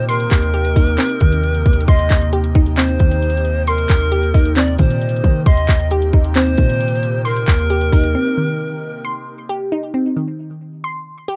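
A half-time trap groove at 134 BPM in 4/4 drives this wistful yet triumphant hip hop excerpt in Eb major, with an up-front electronic kit of hard-clipped kick, metallic hi-hats and handclaps playing from 0.1 to 8.1 seconds. Beneath it a deep, mellow 808-style bass with a sine-like tone and fast attack holds long decaying notes. A glassy, crystalline wavetable pluck spins arpeggios across a broad span, its digital sheen shaped by a filter sweep, chorus and delay, and it is the only part that carries on through to 11.4 seconds. A bright, close-miked pan flute sings a second line with vibrato and a crisp, chiffy attack, echoed by digital delay, while a soft, breathy, detuned pad sustains chords underneath with slow attack, chorus and phaser. The drums and bass drop out for a brief break at 8.1 seconds, and the production stays dry, dark and warm throughout.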